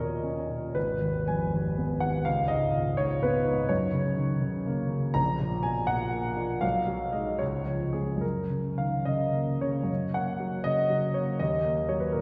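A wet concert-hall reverb with a long tail frames this recording, which is heard from further back in the room. In that space a warm, present grand piano sits up front with long sustain, playing alone in a passionate, lyrical romantic character piece in 6/8 with free rubato. The phrase moves through G#m, F# and C# before returning home by 8.2 seconds, then begins again and touches D#m at 11.4 seconds before this passage, cut from a longer piece, breaks off.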